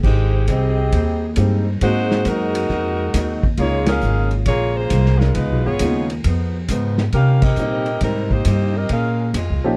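A dry, close-sounding big band swing passage, cut from a longer piece, bursts with joyful energy. A bright, up-front saxophone section carries the melody with vibrato over a woody pizzicato upright bass and a vintage drum kit with dark cymbals, a punchy kick and a pumping small-room sound, while a very quiet, boxy picked archtop guitar adds accompaniment from the start. A warm grand piano with long sustain joins at 1.4 seconds, and the band hits accents at 3.8 and 7.4 seconds.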